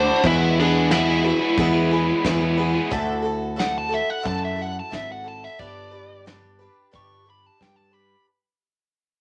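A straight 4/4 pulse at 90 BPM carries this hopeful, warm piece of folk rock and heartland rock, taken from a longer recording and fading out across its 8.3 seconds. Soft brush drums enter at 0.2 seconds with hi-hat, a tight kick and a medium-tuned snare, while a picked electric bass sits up front with a direct tone. A bright, boxy twelve-string acoustic guitar picks a shimmering, octave-doubled accompaniment with a hint of swing. A biting, double-tracked overdriven guitar plays a riff coloured by phaser, dropping out at 2.9 seconds as the harmony moves from E to Dadd9 and on to G. Over the top, an up-front, overdriven lead guitar takes a biting solo throughout, all set in a moderate studio reverb.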